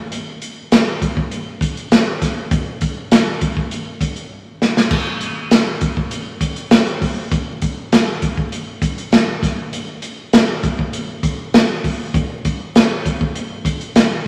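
A swinging big-band drum kit opens this short soul excerpt, its crash cymbal, hi-hat, kick drum and snare drum playing from 0.1 s to 14.1 s in a straight four-four feel. The mood is warm and joyful, carried entirely by this single acoustic kit placed up front in the mix. Its sound is airy and polished, with dark cymbals, a medium-tuned snare and a punchy kick. A drum fill at 4.3 s leads into a return of the opening section at 4.9 s. A moderate club reverb gives the kit a sense of room, while a vinyl crackle lends the recording a vintage patina.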